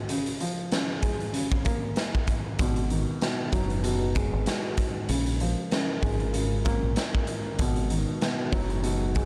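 Boom-bap hip-hop at 96 BPM with a swung 16th feel in G# dorian, reflective yet tough, cut from a longer piece and moving between A#m7 and G#m7. A dark, woody upright piano with short sustain and a cassette-tape tint opens alone, joined almost at once by a raw garage drum kit up front, with a punchy kick, medium-tuned snare and hi-hat, saturated with 12-bit sampler grit in a bright, pumping stone room. A deep, round dub bass enters at 2.6 seconds, and a moody detuned analog pad with chorus and slow attack settles in the background from 3.1 seconds, all under light reverb.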